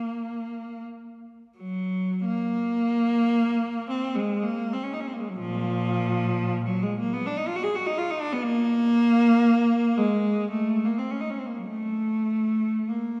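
Classical music for unaccompanied cello, this brief excerpt from a longer piece unfolds in a free, expressive rubato at a slow 38-61 BPM, in 3/4 and Bb minor. The mood is meditative and lonely, carried by a single bowed cello that plays alone from 0.0 to 13.2 seconds. Its tone is clear, smooth and even, with vibrato, and it ranges from Bb2 up to Ab4. A short opening idea gives way at 2.2 seconds to a longer second passage that continues to the end. The cello sits up front in a reverberant concert hall or church, whose long, wet decay of 2.4 seconds surrounds the solo line with resonant space.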